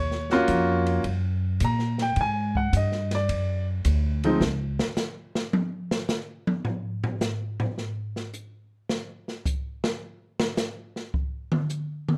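A clear, intimate baby grand piano with audible action noise and a woody pizzicato upright bass open this playful, swinging small-group jazz excerpt at 107 BPM, moving from Ebm7 to Ab7. The piano drops out at 4.4 seconds and the bass at 4.8, leaving the open, acoustic drum kit to carry a solo on hi-hat, ride, snare, toms and a boomy kick until 12.2 seconds. The kit sounds dark and smooth with a rolled-off top in a small room, all three instruments sit up front, and the whole production is warm with light reverb.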